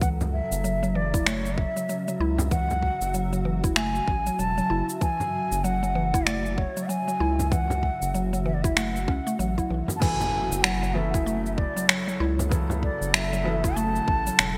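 A swung 4/4 groove at 96 BPM drives this earthy, hypnotic organic downtempo clip in F# minor, where a tight, tape-tinged electronic kick and an overdriven, layered deep house kit of crash, finger snaps and shaker sit up front with gated reverb, joined from 0.2 seconds by a deep, close and dry frame drum played with soft hands. A round analog bass, dark and sustained, pumps against the kick beneath an F#m7 harmony, while a cloudy, evolving granular pad breathes in the background with its own built-in reverb and sidechain pumping. Woody, warbling FM plucks spin arpeggios through chorus and delay, and a breathy bamboo bansuri carries the melody with vibrato, tongued notes and rolled-off highs, trailed by delay. At 10.0 seconds a new section begins as a felt-muted upright piano adds soft, intimate accompaniment with pumping and delay, and a very quiet electronic impact marks the change. A moderate, lush hall reverb and bright 1980s-style digital production frame this excerpt of a longer piece.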